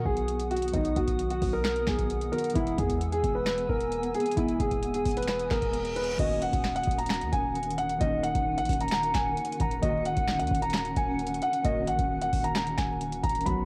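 Hip hop trap excerpt at 132 BPM in a half-time 4/4 feel, menacing and hard-hitting in Eb phrygian, where a dark, mellow grand piano carries the melody up front over warbling, detuned lo-fi synth keys, a cloudy granular pad, a punchy 808-style bass in the background and a booming analog drum machine with deep kick, crisp snare, metallic hats, finger snaps and crash, while a very quiet reverse cymbal rises into an impact at 6.2 seconds as the chords move to Ebm7, all wrapped in cassette-tape haze and vinyl crackle.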